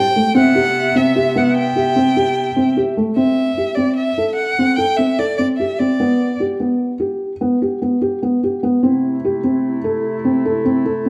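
Set in a moderate recital hall with a 1.3-second reverb, this hopeful, playful chamber piece in 7/4 is cut from a longer work and centres on a felt-muted upright piano. The up-front piano plays mellow, boxy arpeggios throughout, with thick felt and audible action noise. A single up-front violin carries a focused, vibrato-rich melody until 6.4 s, while a bright woodwind section holds soft-edged, classical-style chords at the start and returns at 8.8 s over a C6 chord.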